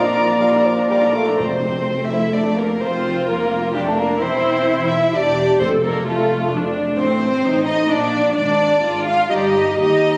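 A brief opening flourish of bright oboe, airy silver flute, a very quiet warm clarinet, distant mellow bassoon, smooth-topped French horn chords and a close-miked trumpet stab falls away by 1.4 seconds, leaving the strings, present from the start, to carry this lively, spirited classical-period symphony movement in F major at 128 BPM in a rubato 3/4. One sul tasto violin section sings the melody up front over a second violin line, with intimate vibrato violas, cellos in the background and double basses beneath, and very quiet, dry timpani touches at 1.4 and 5.6 seconds, all captured on a phone in a reverberant room with compression, cut from a longer piece.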